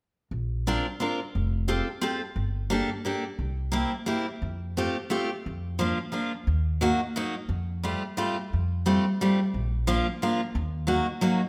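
A lilting 3/4 sway at 176 BPM with a light swing on the eighths drives this nostalgic, whirling musette waltz excerpt in Bb major, where a woody pizzicato upright bass sets the low foundation from 0.3 seconds. A full-bodied picked steel-string acoustic guitar with fresh strings joins at 0.7 seconds in accompaniment, its finger squeak audible, moving through add9 colours, a C7 and a darkening Ebm. Both instruments sit up front in a moderate recital-hall reverb.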